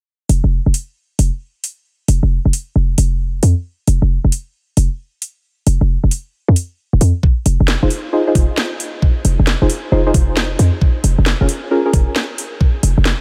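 A punchy, tight 808-style bass sits up front through this skippy, soulful two-step garage excerpt, its sine body carrying a noise layer, sidechain pumping and a filter sweep across the whole clip, while a garage kit of cracking snare and metallic hats rides a swung sixteenth-note feel. A knocking electronic kick arrives at 7.2 seconds as the harmony moves to Fm7, and from 7.8 seconds a deep, mellow chord stab adds nasal, full-bodied plucks bathed in chorus and diffuse ambient delay. Light reverb surrounds the parts, and the kick and drums carry a tape-warm sheen.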